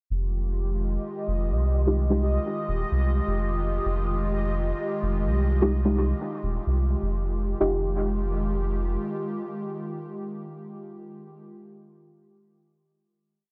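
Dub techno in F minor at 128 BPM, this short, complete piece has a meditative, hazy mood, opening on an Fm9 chord and settling into a steady straight-time groove. An airy, breathy pad with a nasal, detuned edge and a chorus sheen holds sustained chords throughout, while a soft, round dub sub bass sits up front with a deep dub-style line until 9.0 seconds. A bubbling texture of random resonant filter steps, treated with chorus and its own reverb, hovers on a single held high note between 0.9 and 7.6 seconds. Dark, mellow chord stabs built from one shape moved in parallel arrive sparsely, first at 1.9 seconds and then again from 5.6 seconds. They carry chorus, phaser and dub echo, with a filter sweep on them through the groove and ring modulation in their tone. After the groove ends at 7.6 seconds, the piece closes on a lingering final chord. The sound is dry and gritty, with little reverb, giving it a hardware feel.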